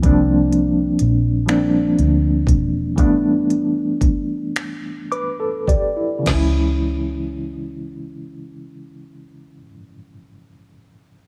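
Slow six-eight R&B with a sultry, late-night mood, cut from a longer piece, where a bright, reedy electric piano with fast tremolo carries the chords through 11.3 seconds and adds a fill as the pace slows before 6.3 seconds, over a dark, foam-muted fingered bass that stops at 9.6 seconds and a produced, up-front drum kit of knocking kick, woody snare, finger snaps, smooth hats and crash that drops out at 6.5 seconds, all in light reverb.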